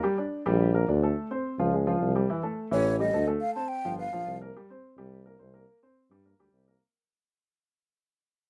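Afro-Cuban jazz fragment, driving and sultry, where a dark, mellow baby grand piano comps up front, a warm tuba enters at 0.5 seconds with vibrato on a jazz-style bass line, and a breathy, hollow silver flute sings a soft-edged melody from 2.7 to 4.4 seconds over chords like Dbmaj7#5 and G7#9, all in a dry, close room as the whole passage fades out.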